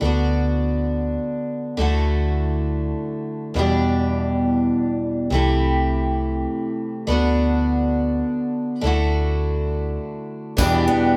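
A shimmering, octave-doubled twelve-string acoustic guitar sits up front, carrying the chords of this haunting, melancholic acoustic folk piece in 3/4 through Bm/D, Dadd9, Em7 and C6 over a round, dark hollow-body electric bass played with the fingers. Around 10.6 seconds a boxy parlour steel-string guitar adds brief arpeggios, while a very quiet vintage brush kit with a punchy kick and dark ride cymbal touches in alongside a jingly tambourine in the background. The small band plays live in a modest room that lends gentle ambience, and the fragment ends at 11.2 seconds.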